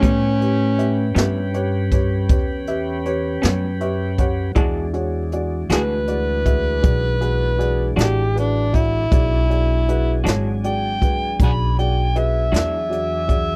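A gritty, overdriven harmonica with tongue slaps, scooped notes and light vibrato leads this swaggering, soulful slow blues in 12/8 at 53 BPM in E mixolydian from the first moment, backed by a brush drum kit with a boomy kick, a woody pizzicato upright bass, a polished upright piano that adds a fill from 3.4 to 4.6 seconds as the chords move from A9 to E9, a smooth tonewheel organ with key click turning through a slow rotary speaker, and a dark, slightly broken-up lo-fi electric guitar with tremolo that drops out at 12.8 seconds, all captured in a dry, close 1970s-style studio sound in this short fragment of a longer piece.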